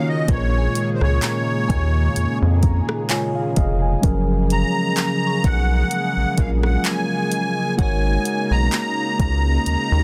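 A slow 64 BPM groove in 4/4 with a light sixteenth-note swing comes from an up-front electronic R&B kit of soft kick, hi-hat, handclaps and rim click and a rubbery, bouncy square-wave bass, both entering at 0.3 s, setting a tender, smooth contemporary R&B mood in F# major. A mellow tine electric piano accompanies throughout and plays a fill from 2.2 to 4.0 s, while a lush, detuned unison pad with chorus and phaser holds sustained chords moving from A#m7 to F#maj9 to G#9sus4. A reedy musette accordion carries the melody with a digital delay, a very quiet, warbling FM bell adds texture, and the dry, dense, heavily limited master keeps this short cut from a longer piece close and polished.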